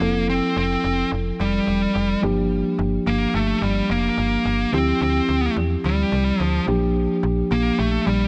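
1980s-style pop at 108 BPM in a straight 4/4, romantic and glossy, where a dark, compressed fuzz lead guitar carries the melody up front with distortion and digital delay over a mellow, clean tine electric piano and a snappy, slap-like FM bass with a metallic attack, all moving through Fmaj7, Gm7, Dm11 and Bb6 in a light reverb and digital ambience for this 8.3-second excerpt cut from a longer piece.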